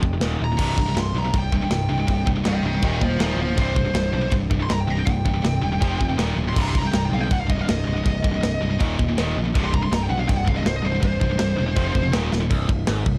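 A dark, high-gain lead guitar solo with digital delay cuts through this aggressive, heavy metal excerpt from 0.4 seconds, riding over two bright, distorted rhythm guitars that pick out the riff in the background. A round, punchy fuzz bass sits up front beside a tight acoustic drum kit with bright china and crash cymbals, a medium-tuned snare and a tight kick, which lands a fill at 12.3 seconds. The production is dry, dark and warm, with power chords shifting over a C minor foundation.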